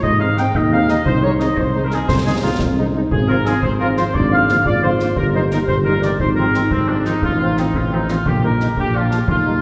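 Up front, a roomy woodwind section with light vibrato carries a second line through this proud, spirited 6/8 military-style march for wind band in Ab major at 117 BPM, over a punchy tuba bass, a close-miked euphonium, a smooth-topped French horn section and a soft-attacked trumpet melody set in the background, with concert bass and snare drums bringing dark cymbals, the band heard from further back in a wet scoring-stage reverb.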